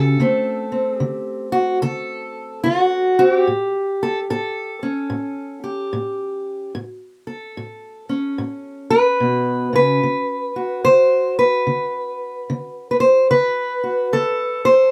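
Set in a moderate booth ambience, this laid-back, gritty acoustic country blues excerpt features a solo fingerpicked steel-string parlour guitar, up front and warm, swinging easily in 4/4 through D7 and A7 before settling on D around 10.0 seconds.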